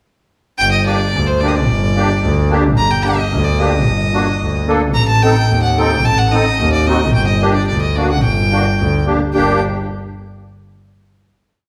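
A bowed violin and a bowed double bass open this short, complete klezmer piece together at 0.6 s, with the musette accordion joining at 0.8 s. It moves at 110 BPM in a straight 2/4, in G harmonic minor, and its mood is soulful and bittersweet. The solo violin sits up front with a bright, earthy tone, a light vibrato and an airy bow as it carries a modal melody full of ornaments, while the single bowed bass plays a clear, intense quarter-note figure with its own vibrato. The reedy accordion, shimmering in its musette tuning and placed mid-forward, fills in with off-beat triad chords as the harmony moves from G minor to A diminished and back to G minor. A rich recital-hall reverb gives the trio the air of a church or concert hall, and the piece settles on a final chord at 9.3 s.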